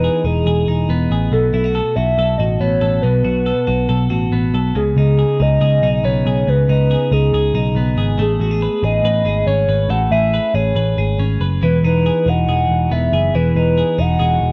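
Jangly indie pop with a youthful, bright mood, this short excerpt moves in straight 4/4 through Emaj7, B5, C#sus2 and Amaj9 before returning to Emaj7. A hollow, woody synth lead with a clarinet-like, warbling tone carries the melody through chorus and slapback echo, while a twangy, compressed twelve-string electric guitar rings out arpeggios and a round, punchy muted bass sits up front beneath them. The sound is dry and close, like a 1970s studio recording, with all three parts playing throughout.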